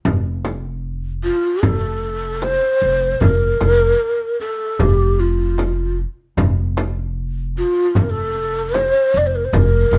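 A straight 4/4 pulse at 76 BPM drives this passionate, festive Persian modal ensemble piece in F dastgah mahur, cut from a longer performance. From 0.1 seconds a pizzicato upright bass sits up front on a woody, steel-strung F1, joined by a close, dry frame drum struck with hard hands and a deep tombak played with soft hands at a very quiet level. At 1.2 seconds a breathy low ney enters as the lead, ranging from F4 to D5 with crisp, chiffy attacks, vibrato and an unsteady, end-blown reed-cane tone placed up front. The ney stands a touch above the rest of the group in level, while the tombak stays furthest back. The band plays live together in one room, with light reverb giving the acoustic sound a sense of shared space.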